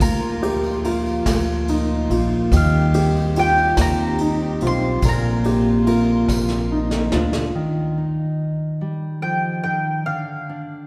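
A slow, straight 6/8 pulse at 48 BPM carries this nostalgic acoustic folk excerpt in Bb major, where an up-front mandolin sings a round, mellow melody over full-bodied fingerpicked steel-string guitar with audible finger squeak, woody pizzicato upright bass, a distant brushed drum kit that plays a fill at 6.3 seconds, a jingly tambourine in the background, soft arpeggios on felt-muted upright piano and floating sul tasto strings, set in a reverberant concert-hall space, until the drums, bass, strings, piano and tambourine fall away by 7.5 seconds, leaving mandolin and guitar alone to the end.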